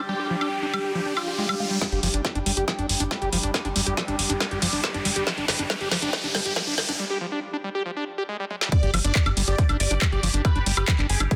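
This psychedelic trance excerpt runs straight and hypnotic, with an intense drive from its opening moments. An overtone-sweeping drone with phaser and chorus sits in the background beneath a very quiet, ethereal pad, while an electronic riser climbs through the first 7.0 seconds and a squelchy, resonant acid bass with distortion and tape echo carries the riff throughout. A huge, detuned supersaw melody flashes briefly at the start, then the tight electronic kick arrives at 1.8 seconds as the build-up begins, joined a moment later by a dark, punchy sequencer bass, with a filter sweep on the acid bass and a kit of woody snare, metallic hats, handclaps, toms and woodblock up front. After a short break, the drop lands at 8.7 seconds, bringing the gritty, sampler-roughened supersaw back with digital delay and sidechain pumping. The mix is dense and heavily limited, set in a light digital ambience.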